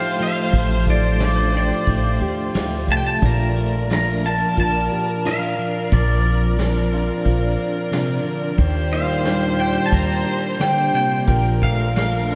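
In a straight 4/4 sway, this tender, nostalgic acoustic folk-pop ballad drifts through a dreamy hall reverb: a bright, up-front pedal steel guitar carries the melody with volume swells, lush chorus and delay, while a focused bowed viola with vibrato sings a distant second line. Fingerpicked nylon-string guitar, complete with finger squeak, supplies the accompaniment, and a floating chamber string section holds soft-attack chords in the background. A slightly broken-up electric guitar through a small old amp adds tremolo-tinged arpeggios, soft brushes on the kit come in at 0.2 seconds, and a woody, thumpy pizzicato upright bass joins at 0.5 seconds.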